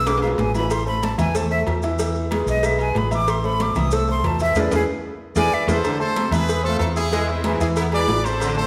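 Passionate and fiery, this short salsa passage opens with a breathy silver concert flute carrying the melody, its close-miked tone crisp in attack, with vibrato and a slightly unsteady line. Beneath it, a dark, round hollow-body electric bass sits up front, while a clear grand piano supplies the accompaniment, congas, timbales with agogo bells and grainy maracas fill the background, and a very quiet, tight cowbell adds its close, dry tick. Drum fills mark the opening moments and the run-up to the change of section, where a band accent lands just before the flute solo ends at 5.8 seconds. A punchy, brilliant horn section takes over the melody from 5.4 seconds, supported by a tight trombone section playing a second line behind it. The whole ensemble rings in the lush reverb of a recital hall, giving the fiery groove a spacious, church-like glow as the harmony moves between minor and dominant chords.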